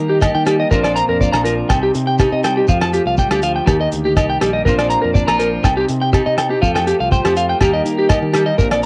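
A home cassette recording with light reverb catches a sunny, danceable highlife guitar band at 122 BPM in straight 4/4, in a short cut from a longer piece that cycles through Eb, Bbadd9, Cm and Fadd9. Up front, a twangy electric guitar at the edge of break-up plays high arpeggios through tape echo, over a clean, compressed guitar accompaniment, a round, punchy fingered bass and a mellow combo organ holding sustained chords with light vibrato and subtle chorus in the background. A cloth-damped kit with a tight kick, rolled-off top, hi-hat and rim click joins at 0.2 seconds alongside ringing agogo bells and a grainy shekere.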